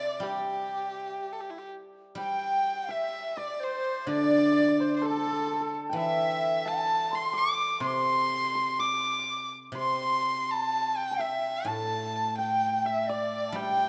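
A moderate recital-hall reverb surrounds this graceful, pastoral Chinese chamber ensemble, cut from a longer piece and flowing in a free, rubato 2/4. The erhu carries the melody up front in an intimate, close voice with a soft attack, airy bow, portamento and light vibrato. The hammered dulcimer adds a shimmering second line, and a mellow large dizi with a buzzing bamboo membrane drifts unsteadily in the background, while the silvery, fingerpicked guzheng supplies a low accompaniment up front throughout, and a new section opens at 2.2 seconds.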